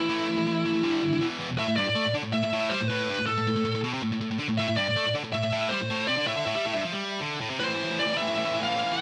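Metal in A minor at 160 BPM, epic and dark: a bright, high-gain lead guitar carries the melody from E4 to G5 over a double-tracked, picked, distorted riff guitar in the low register, both up front in light reverb, moving through A5, G5 and E5 power chords before the feel drops to half time on an A minor chord at 7.6 seconds in this short cut from a longer piece.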